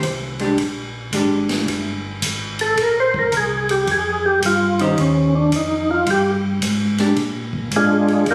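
A dark, clean hollow-body electric guitar comping, a round, mellow tonewheel organ bass with key click through a slow rotary speaker, and a natural big-band drum kit with a punchy kick and dark cymbals open this greasy, bluesy soul jazz organ trio excerpt at a swinging 109 BPM in Bb mixolydian, before a full, lightly overdriven, percussive tonewheel organ with chorus vibrato and slow rotary takes the up-front melody at 2.6 s, the guitar dropping out at 7.2 s, all heard as if captured on a phone in a large, reverberant studio.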